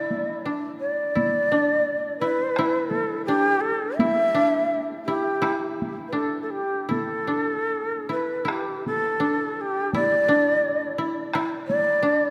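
A breathy bamboo shakuhachi and a mellow koto begin together in this calm, austere excerpt of Japanese chamber music, which moves in a loose, rubato 4/4 at about 84 BPM. The end-blown shakuhachi carries the melody up front, its tone warm with rolled-off highs, touched by vibrato, tongued attacks and a breathy chiff. The koto, also up front, plays a second line in a narrow low range, its fingerpicked notes dry and woody. A taiko ensemble struck with heavy sticks enters at 0.1 s and sounds in a live room, sitting lower in the mix. The whole performance is bathed in a long, cathedral-like reverb, and the music moves into a new section at 8.5 s before the cut at 12.3 s.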